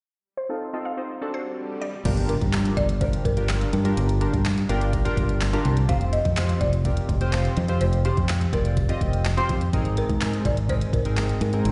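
A straight 4/4 groove at 125 BPM drives this confident, bittersweet dance-pop excerpt in G phrygian, with a smooth R&B drum kit of soft kick, fat snare, hi-hat, handclaps and crash arriving at 2.1 seconds alongside a round, punchy fingered electric bass that pumps up front. Before that, a bright FM synth pluck plays a brief melody while glossy, detuned retro synth keys with chorus and tremolo carry the chords under a filter sweep and a background electronic swell that gives way to an impact. From 2.3 seconds a dry, woody folk marimba takes the melody with slapback and tape echo, heard as a live gig through the venue's PA with recital hall reverb and a dulled top end.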